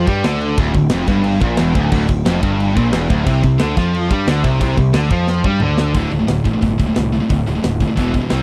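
Epic and relentless, this heavy metal excerpt layers three picked guitar riffs in the background: a sludgy overdriven one, a scooped high-gain distorted one, and a double-tracked overdriven guitar that drops out at 5.9 s. Beneath them, a growly fuzz bass drives the low end, while an up-front, gritty metal drum kit with bright cymbals and a tight kick plays a fill from 5.3 s. The power chords move from C5 to D5 at 6.0 s in a dry, close, 1970s-style studio sound.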